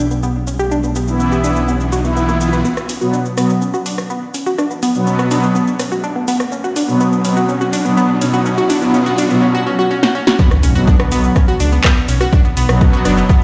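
A straight 4/4 pulse drives this dark, cinematic melodic techno fragment, cut from a longer piece. A punchy analog drum machine with overdrive and a short room on its snare, claps and hats layers shaker, rim click and hi-hat, while a round, detuned analog pluck spins bright, chorused arpeggios that pump against the sidechain and echo through delay. A brassy, nasal analog pad adds bold stabs with vibrato, and a menacing, saturated detuned saw bass swells up front at the start, drops out at 2.6 seconds and returns for the drop. Through the long build-up, a filter sweep opens the arpeggios as a background riser climbs, until a drum fill hands over at 10.4 seconds to an overdriven electronic kick and an impact. The whole mix sits in a wet, stone-like reverb, as if blasted through a big sound system in a bare room.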